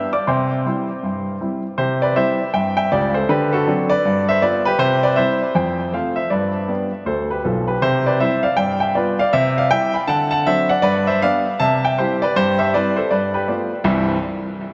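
Stride jazz piano in C major, swinging at 159 BPM in 4/4 with an exuberant, playful mood, heard in a short cut of about 14 seconds from a longer piece. A clear, polished baby grand plays solo and sits up front, spanning B1 to E6 with a touch of delay, moving through changes such as D7, G7 and F before resting on a G9 that resolves to C at 13.9 seconds. The recording is soaked in a lush hall reverb with a long 2.8-second tail, giving the clear playing a dreamy, glowing halo.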